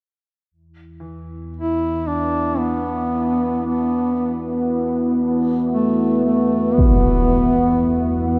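Dark ambient drone at 58 BPM, dark and cavernous, cut from a longer piece and resting on a single Esus2 chord. A deep, ominous rumbling drone enters at 0.7 seconds under a filter sweep, joined by very quiet, clear but worn grand piano arpeggios and a moody, detuned pad of sustained chords with chorus. Up front, a dark duduk sings a folk-style melody with vibrato and scooped notes through analog delay, and a huge, bright impact strikes at 6.8 seconds, all drenched in an enormous dreamy reverb.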